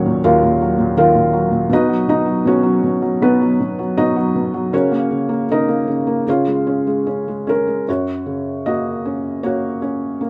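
A dark, warm production with light reverb frames a felt-muted upright piano that sits up front, its tone soft, mellow and intimate. This peaceful classical excerpt, cut from a longer piece, unfolds as a lyrical solo in a flexible rubato feel, moving through gentle harmonies before settling into a new passage at 7.9 seconds. The piano spans a low bass register up into its upper middle range and plays alone throughout the 10.3 seconds.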